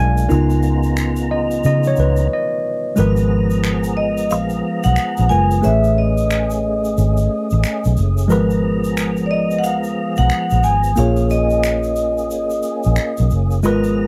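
Late-night and sultry, this neo-soul R&B excerpt moves at 90 BPM with a swung sixteenth feel in G# dorian, over a dry, close 1970s-style studio sound. A worn, slightly out-of-tune tine electric piano and a fat, lightly overdriven tonewheel organ, with key click, chorus vibrato and slow rotary speaker, carry chords such as C#13, G#m69 and Amaj9#11. A round, foam-muted fingered bass sits up front and a distant egg shaker with finger snaps ticks along; after a brief stop at 2.3 s, a ringing, metallic vibraphone with slow motor vibrato enters at 4.0 s to carry the melody.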